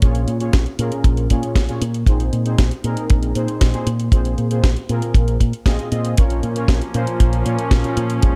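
Italo disco in Bb minor at 117 BPM, this bittersweet, nostalgic excerpt sets bold, detuned sawtooth synth brass stabs with chorus and digital delay over a fingered electric bass through an envelope filter, an up-front dry kick and a tape-toned house kit with a cracking snare and hi-hat, while a reedy, gut-strung chamber string section joins with sustained chords at 6.2 seconds, all in a dark, warm small-room production.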